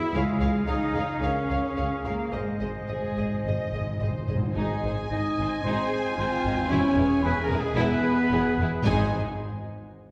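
Dark, distant French horns hold sustained chords over rich cellos and double basses in this heroic, triumphant film-score cue at 111 BPM, while lush violins carry the melody with a second violin line, warm violas and a ringing harp fill the accompaniment, a bright oboe, clear clarinet and hollow, airy flute add soft background lines, round timpani play a fill from 2.3 seconds, and mellow trumpets enter with tight stabs at 4.6 seconds, all set back in a reverberant scoring-stage space.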